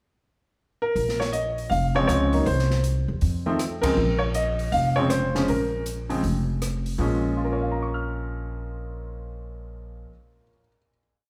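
A swinging, late-night jazz piano trio piece, short and complete, set in a reverberant recital hall with the sound of a church or concert hall around it. A clear, smooth grand piano with a vintage character and short sustain sits up front, opening on a brief pickup at 0.8 seconds before spinning motif-based melodic phrases over syncopated comping in rootless voicings. The upright bass is woody and growly, played pizzicato with steel strings and a thumpy attack, moving in a two-feel from 1.0 seconds and staying prominent in the mix. The acoustic drum kit keeps time with sticks on the hi-hat, with dark cymbals, a medium-tuned snare, rim clicks and a boomy kick sitting further back, and the band hits a shared accent at 3.8 seconds. The drums drop out just before 7 seconds as the trio settles onto a final Bbm7 chord, leaving piano and bass to ring into the hall.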